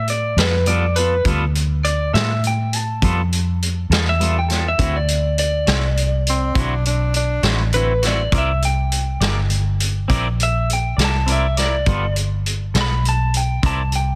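Gritty and soulful, this slow blues excerpt rolls along in a straight 12/8 feel over dominant ninth chords. A vintage drum kit sits up front with a punchy kick, a medium-tuned snare and hi-hat, its saturated, mid-forward sound rounded off by a rolled-off top. The muted fingered bass is dark, round and amped, holding the low end from the first moment to the last. Carrying the melody, a picked electric guitar through a small old amp sounds slightly broken-up and compressed, while a clean, twangy second guitar fills in picked accompaniment shimmering with harmonic tremolo. Briefly, from 6.3 to 7.6 seconds, a smooth-topped tenor saxophone adds a jazz-style line with vibrato and scooped notes, trailed by tape echo, and the whole mix is dense and heavily limited with studio reverb.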